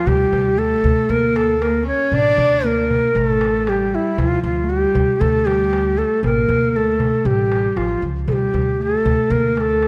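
A breathy, bright ney carries the melody from the first moment, up front and reedy with vibrato and tongued notes, while a single close, intimate cello plays a second line beneath it with light vibrato, a soft attack and an airy sul tasto bow. Plucked upright bass with a woody tone and a crisp metal-shell darbuka played with soft hands join at 0.1 seconds, setting a straight 4/4 pulse at 117 BPM in D maqam nahawand. This melancholic, soulful Arabic maqam ensemble piece sits in a moderate scoring-stage reverb, heard as a short cut from a longer performance.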